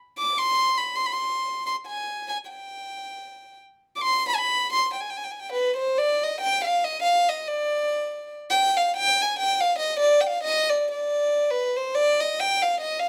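Bittersweet and fiery, this fragment of a longer Balkan folk piece in a straight 7/8 at 279 BPM (counted in eighths) and C harmonic minor features a lone bowed violin from 0.2 to 13.1 seconds, ranging from B4 to D6 with a soft attack, an airy sul tasto bow and a pure, floating tone that sits close and up front, while a moderate studio reverb fills the room, the recording is heard from further back, and the line moves into a new section at 5.5 seconds.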